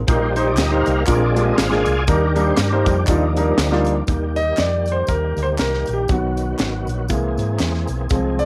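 Hopeful and uplifting, this short cut of uptempo gospel swings in 4/4, with a round, punchy hollow-body electric bass and an intimate concert grand piano up front, its action noise audible, over a crisp, airy drum kit with a high-tuned snare and punchy kick. A gritty, overdriven tonewheel organ with key click, chorus vibrato and fast rotary speaker takes the solo for the first 4.1 seconds before the piano solos from there to the end, while maracas and a group handclap sit close and dry in the background. The whole has light reverb and the character of a home cassette recording.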